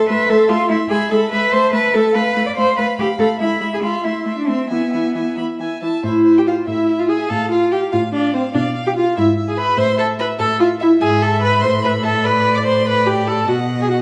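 A 6/8 metre at 96 dotted-quarter beats per minute, handled with a rubato feel, drives this spirited, lively classical-period movement for string quartet in A minor, heard as a 14-second passage from a longer piece. A focused, distant first violin carries the melody with vibrato, while a second violin adds an expressive counterline with a soft attack, rich tone and touches of portamento. Beneath them the viola, entering at 0.1 seconds, and the cello sit prominently in the balance, both smooth and even with vibrato; the viola supplies accompaniment and the cello anchors the bass. The harmony moves mostly between A minor and E, passing through F and a diminished B chord before closing on B at 13.5 seconds, and the same opening idea returns at 6.0 seconds. A recital-hall reverb gives the dark, warm production a resonant sense of space.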